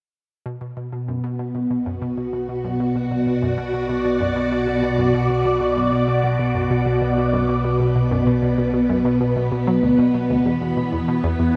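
Bathed in a lush, wet hall reverb, this hypnotic, expansive ambient excerpt in B minor at 96 BPM puts a bright, swirling phased string machine up front with sustained vintage chords under ensemble chorus, phaser and shimmer reverb, while a round, detuned analog pluck riff with ring modulation, a filter sweep and analog delay, and an evolving pulse-width analog drone bass in the background, both fade in from 0.5 seconds, the Bm harmony shifting to E5 at 10.5 seconds.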